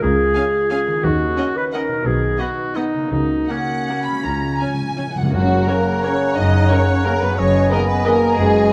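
Festive and sweeping, this orchestral ballroom waltz, cut from a longer piece, moves in a rubato 3/4 at 151-196 BPM in F# major. Two lush, bowed violin sections carry the melody and a second line over clear violas, rich cellos and double basses, mellow French horn chords, and a ringing, fingerpicked concert harp in the background, while a dark clarinet and a warm oboe weave second lines and very quiet timpani with hard mallets play a fill from 4.3 s. At 5.3 s a hollow silver flute and a light-vibrato bassoon join, followed by soft-attacked trumpet stabs and sustained chords from a distant trombone section, with a moderate scoring-stage reverb around the orchestra.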